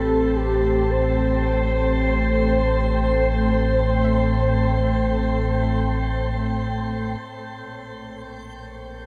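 This serene, melancholic ambient excerpt opens on a dark, glassy FM pad holding sustained chords up front, its warbling ensemble chorus and long release giving it a vintage, ethereal glow over a deep, round sub bass. At a slow 57 BPM in a straight 4/4, a velvety synth lead carries the melody between G4 and Db5 from the very first moment, its detuned unison body softened by chorus, vibrato and a diffuse ambient delay. Tucked very quiet beneath them from the start, a soft, round pluck traces mellow arpeggios. The harmony rests on Am7 before shifting to Bbm7 at 7.2 seconds, and at 7.5 seconds a bright, reversed granular texture swells in the background on a high G6. A wet shimmer reverb with a long 7.7-second tail bathes the whole piece in a dreamy, suspended space before it cuts off at 9.1 seconds.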